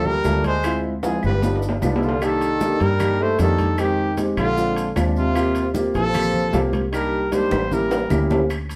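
Heard from further back in a reverberant studio, this sunny, lively Afro-Cuban jazz fragment sets a clear, lightly vibrato trumpet melody with scooped notes over a brilliant trombone second line, natural grand piano accompaniment through rich jazz chords and a dark, round, up-front fingered electric bass, while damped congas, ringing metal-shell timbales, woody claves and grainy maracas sit in the background, with drum fills at 1.0 and 7.3 seconds.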